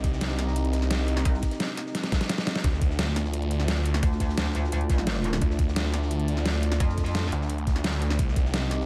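A tight, up-front mix with light reverb opens this short cut from a longer piece of dark, technical drum and bass, mechanical and brooding in a straight 4/4. An electronic kick with a knocking punch drives the groove alongside a layered dubstep kit of deep snare and metallic hats, while a very quiet breakbeat kit adds a gritty, saturated acoustic undertow of hi-hat and snare; a drum fill arrives at 1.9 seconds. Underneath, a snarling distorted saw bass growls with detuned unison sawtooth and a moving notch, bright and compressed with tube saturation. A metallic FM wobble bass with chorus makes a brief appearance at 1.3 seconds, then returns from 4.0 to 7.3 seconds to add its aggressive, wobbling edge. Behind it all, a moody analog pad holds sustained, wave-folded chords with a slow attack, subtle chorus and sidechain pumping, as the harmony moves from C minor to D minor and back to C minor.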